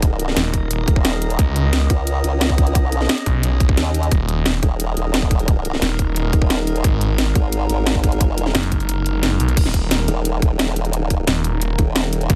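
Dark and tense, this excerpt of technical drum and bass at 176 BPM brings together a tight, overdriven kick and a drum kit with cracking snare and bright hats alongside a growling, detuned saw bass that enters at 0.4 seconds with tube-saturated distortion and sidechain pumping, a formant-filtered wobble bass, and an eerie, metallic FM drone holding sustained chords under chorus and built-in reverb, all in a dry mix where the kick drops out from 8.9 to 9.6 seconds before the drop repeats.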